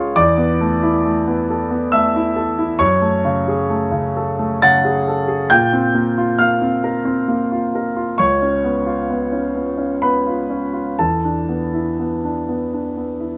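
A solo concert grand piano opens this short neoclassical minimalist passage, cut from a longer piece. Its tone is clear and polished with deep bass, sitting present and up front in a light reverb. In a reflective, wistful mood, the playing moves freely in rubato at 60-69 BPM in 3/4, spanning C#2 to A6 as the harmony passes through E7sus4, F#madd9, A#sus2 and C#7 before returning to E7sus4 at 11.0 seconds.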